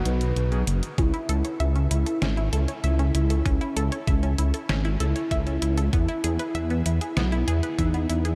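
A dark, rumbling detuned saw bass sits up front in this driving, moody synthwave excerpt, entering at 0.1 s together with a velvety synth lead carrying the melody with chorus, cassette-tape color and tape echo, and a detuned 8-bit drum machine supplying hi-hat and a medium-tuned snare. An electric grand piano opens with brief, clangy stabs in the background that end at 0.6 s, and from 1.0 s a nasal analog pluck spins bright arpeggios through chorus, phaser and tape echo while a thumpy, tape-warmed electronic kick drum joins. The chords move from B to A to E, and the whole mix is dreamy and soaked in a huge ambient reverb.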